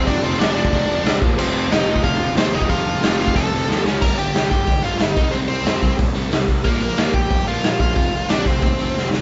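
Urgent and angry, this punk rock cut from a longer piece charges along at 182 BPM in straight 4/4, led by an up-front bluesy lead guitar, dark and distorted, over a raw garage drum kit with a punchy kick, a medium-tuned snare and a gritty, saturated tone. Behind them, a crunchy overdriven guitar and a growly fuzz bass drive the riff, while a very quiet, bright, compressed second electric guitar adds its own riff until it drops out at 4.0 seconds. Drum fills arrive at 3.7 and 9.0 seconds, and the live one-room sound is dry with a rolled-off top as the chords move from F5 and Bb5 into Gm and Cm.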